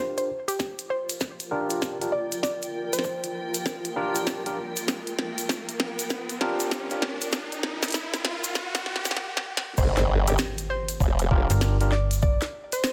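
Lightly reverberant and gritty, this swaggering glitch hop excerpt in G minor at 98 BPM with a swung 16th feel opens with a woody, wave-folded pluck melody and barky, overdriven tine electric piano stabs under a filter sweep, while a blurred granular cloud pad, an electronic riser, clicky hats with a tiny snare and crash, a grainy distant egg shaker and a thumpy, pitched-down kick build toward a drop at 9.8 seconds, where an up-front, saturated formant-sweep wobble bass lands with an impact before a snappy, metallic slap-like FM bass takes over at 11.5 seconds.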